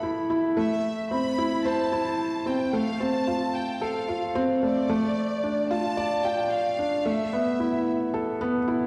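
Intimate and cinematic, this darkly produced electronica fragment in A minor at 111 BPM sets a soft, mellow felt-muted upright piano riff up front, with audible action noise and a digital delay, beneath a rich, focused violin section melody with vibrato that sits lower in the mix and stops at 7.9 s, while the chords move from Esus4 through Am, F and Dm back to Esus4 inside a wet recital hall reverb.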